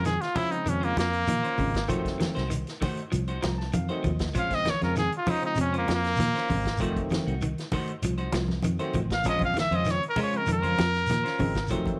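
Driving and intense, this afrobeat excerpt moves at 98 BPM in a straight 4/4 in Bb minor, cycling between Bbm9 and F7b9 chords. A bright, punchy trumpet sits up front and solos throughout, ranging from Bb3 to F5 in a present, pop-style voice. Beneath it, a round, foam-muted fingered electric bass anchors the low end, while a vintage acoustic drum kit with a tight kick, medium-tuned snare and hi-hat gives a natural, rolled-off feel. A clean semi-hollow electric guitar plays picked stabs, a second guitar at the edge of break-up picks arpeggios in the background, and a barky tine electric piano through a combo amp adds accompaniment, playing a short fill between 3.1 and 4.4 seconds. Grainy shekere and close, dry congas with soft hands fill out the percussion behind the band, all set in light reverb and a small-room ambience.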